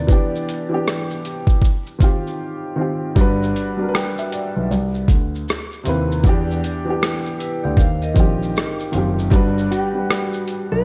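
A swung, gritty boom bap drum kit of thumpy kick, hi-hat, rim click and shaker, compressed, pitched down and up front, drives this dreamy, mellow lo-fi hip hop excerpt at 78 BPM in G major, where a worn, woody, slightly detuned upright piano with audible action noise and cassette tape colour plays accompaniment over smooth, deep concert grand piano bass, a clean, fingered electric guitar with lush chorus carries the melody at the opening and returns at 9.7 seconds, and a ringing, metallic vibraphone with slow motor vibrato and analog delay adds a brief second line from 7.4 seconds, the harmony moving through Em7, Eb69, Gmaj7 and Cmaj7 in a dark production with light studio reverb.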